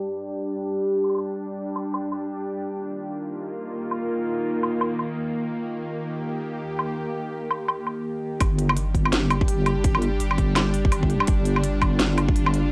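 A deep, dark wobble bass with a detuned, chorused edge arrives at 8.4 s, when the music drops into its heavier second section alongside a tight electronic kick placed up front. This is a tense, heavy half-time drum and bass fragment with a swung sixteenth feel, cut from a longer piece. It opens on a string-like drone of sustained sawtooth chords that blooms slowly with vibrato, a noise layer and its own reverb, pumping with sidechain compression while a filter sweep builds through the opening section. From 1.0 s a layered electronic kit joins with a cracking snare, crisp hi-hats and woodblock, softened by low-pass filtering and cassette tape coloring. The recording has the muffled character of a home cassette capture in a moderately reverberant studio room.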